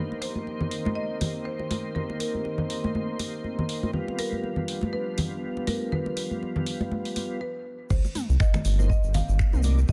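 Afro house with a driving, warm mood, cut from a longer piece and riding a swung sixteenth-note feel. From the start, an ethereal, airy pad holds sustained chords in the background with ensemble chorus and its own reverb, while a smooth tonewheel organ plays up-front stabs through a slow rotary speaker, chorus vibrato, gritty 12-bit sampler colour, a low-pass filter and dub echo, both pumping against the sidechain. Close, dry, ringing congas and a deep house drum kit with overdriven crash, finger snaps, hi-hat and toms carry the groove, as a woody, bright marimba melody with medium hard mallets adds its own sampler grit and dub echo. The harmony moves from Cm7 to G7 and back to Cm7, and after a brief break at 7.4 seconds the drop lands at 7.9 seconds. There a round, dark, deep analog bass enters up front with ring modulation and sidechain pumping, joined by a knocking electronic kick and a grainy, compressed tube shaker tucked in the background, all set in a light reverb.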